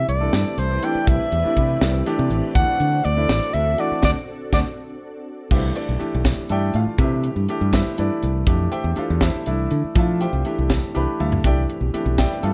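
Funky and bright, this short electric jazz fusion passage moves at 81 BPM in 6/8 in C major, with a mellow, subtoned soprano saxophone carrying the melody with light vibrato and slapback echo until 4.6 s. A clear, vintage grand piano and an up-front fingered electric bass play throughout, while a crisp fusion drum kit with a high-tuned snare and tight kick enters at 0.1 s, and a silky, warbling string machine with ensemble chorus sits in the background, dropping out at 5.5 s before returning near the close. A band accent and fills from drums and piano mark the move from Cmaj9 and D7 into a second section built on Cmaj9 and Fmaj9, set in a light reverb.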